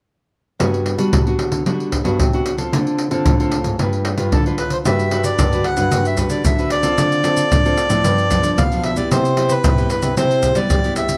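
A straight 4/4 groove of deep surdo, pandeiro and maracas, vintage and band-limited and up front, drives this sunny, festive samba-choro passage in G major at 113 BPM. A bright, fingerpicked nylon-string guitar with fresh strings and audible finger squeak picks out the Gmaj7, Dm7 and G7 changes over a dark, thumb-plucked nylon-string bass line, and at 4.3 seconds a reedy, close-miked accordion joins to carry the melody through to a closing Cmaj7, all set in a moderate large-studio reverb and cut from a longer piece.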